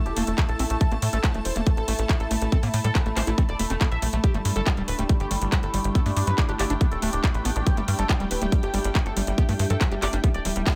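Intense and driving, this psychedelic trance excerpt runs at 140 BPM in a straight 4/4, anchored by an up-front, tight electronic kick and a garage drum kit of cracking snare, hi-hat and handclaps in a small room, under a punchy sawtooth sequencer bass with a plucked filter. A screaming, guitar-like overdriven synth lead carries the melody with distortion, chorus, phaser, vibrato and tape echo, while a squelchy, resonant acid bass riff sits in the background with filter sweeps, cassette grit and sidechain pumping. Behind them, a detuned drone with moving overtones sustains chords that shift from A5 to G5 at 4.2 seconds, a lush bowed string section adds a warm texture, and a very quiet electronic zap flickers at 7.6 seconds.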